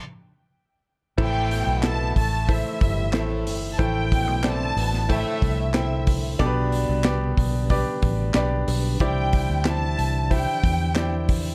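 A dry, close-sounding mix opens on a silent stop of just over a second before a bittersweet, earnest piano-driven pop passage in A minor at 92 BPM arrives at 1.2 seconds, moving from Am through G/B to Cadd9. A clear, polished baby grand carries the accompaniment over a round, foam-muted fingered electric bass set up front and a smooth acoustic kit with a tight kick, medium-tuned snare, hi-hat, handclaps and crash, while a lush studio violin section sings the melody from a distance with vibrato and portamento. Beneath them a very quiet, lightly overdriven tonewheel organ holds chords through a slow rotary speaker, and a punchy French horn section adds a background second line from 1.5 to 5.7 seconds in this fragment of a longer piece.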